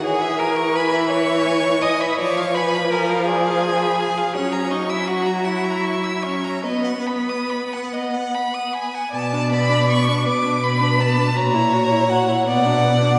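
Classical string quartet in a slow, tender and serene romantic movement, in a rubato 6/8 at 45-57 BPM, where a rich, distant first violin sings the melody alongside a focused second violin line, a dark, up-front viola accompanying with soft attacks and expressive portamento, and a smooth, even cello bass, all bowed with vibrato in a wet church reverb as the harmony turns from B major to B minor at 9.1 seconds in this fragment cut from a longer piece.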